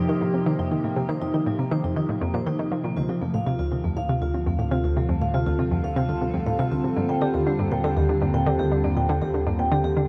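A straight 4/4 pulse at 120 BPM drives this mysterious, hypnotic excerpt of ambient, sequencer-driven space music: a bright, wave-folded analog pluck riff with chorus, cassette tape and tape echo sits up front beside mellow, ringing soft-mallet vibraphone arpeggios with tape echo, over a morphing wavetable pad holding sustained chords through chorus and phaser, and a deep, dark analog bass joins at 3.0 seconds as the harmony moves from F7sus4 to Dm and then to Eb at 7.0 seconds, the whole set inside a huge ambient reverb.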